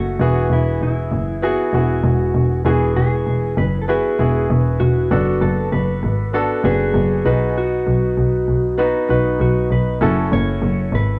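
This short piece of piano-driven pop has a homespun cassette sound, with its top end softened and a small room lending a moderate, brief reverb. A clear concert grand piano carries the accompaniment with deep bass, a polished, present tone and short sustain, set up front and touched by the same tape character. Over it, a mellow electric guitar plays the melody in a dark, clean, fingered and compressed voice, with subtle chorus, cassette tape colour and plate reverb. A focused double bass, played by one bowed player with vibrato, sits up front as the loudest part and anchors the low register. The harmony moves from Eadd9 through D6/F# and B before a new section arrives at 10.0 s on F#m7, and the whole piece feels hopeful and warm in a straight groove.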